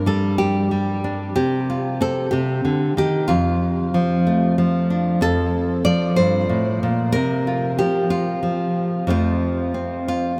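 A fingerpicked nylon-string guitar carries this short, hopeful folk fragment alone in a straight 6/8, its full-bodied, deep classical tone sitting up front with analog delay. The harmony drifts gently through chords such as Cm, F6, F69 and Csus4 before settling onto F at 9.1 seconds for a brief closing passage. A huge, wet ambient reverb soaks the sound in a dreamy, pastoral haze.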